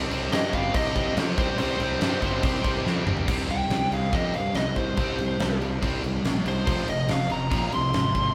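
A straight 4/4 pulse at 142 BPM drives this heavy, menacing hard rock excerpt in C minor, where a huge, pumping arena drum kit with punchy kick, fat snare and bright cymbals sits up front beside a double-tracked, high-gain distorted guitar riff, a growly fingered fuzz bass rumbles underneath, and a nasal lead guitar with a parked wah and analog delay launches into a solo at 3.3 s after a drum fill, the band captured playing live together in one room with moderate large studio reverb.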